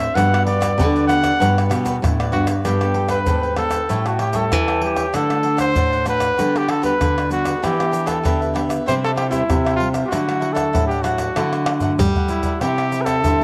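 This sunny, festive samba and choro fragment is cut from a longer piece and led by a warm, jazz-style trumpet with vibrato that sits up front and opens with a short solo passage over the first 2.7 seconds. Beneath it, a bright, crisp picked cavaquinho and a fingerpicked classical nylon-string guitar, both carrying a cassette-tape tint, supply the accompaniment, with audible finger squeaks on the guitar. A second, full-bodied nylon-string guitar holds down the bass line from further back. From 0.2 seconds, a small-room percussion group of egg shaker, tight surdo, pandeiro and tamborim, played with hard hands, drives the groove, and it plays a drum fill just before the close. The harmony moves through bright major-seventh and added-ninth colours before settling on a bare G5 chord, all bathed in a moderate spring reverb with the homespun character of a cassette home recording.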